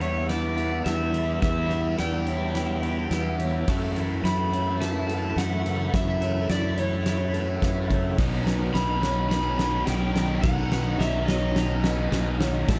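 A cathartic, cinematic post-rock build-up unfolds with a huge arena drum kit playing a continuous fill of punchy kick, fat snare and bright cymbals, while a growly, fuzz-drenched fingered bass sits up front and an overdriven slide guitar carries the melody through analog delay. Beneath them, a phased overdriven guitar riff mixes with very quiet arpeggios from a clean twelve-string and a lo-fi, slightly broken-up guitar through a small old amp, as a faint pedal steel holds sustained chords over the Em, F#m7 and Badd9 changes. At 8.2 seconds a distorted guitar riff joins in the background, all within a dark small-room sound in this fragment of a longer piece.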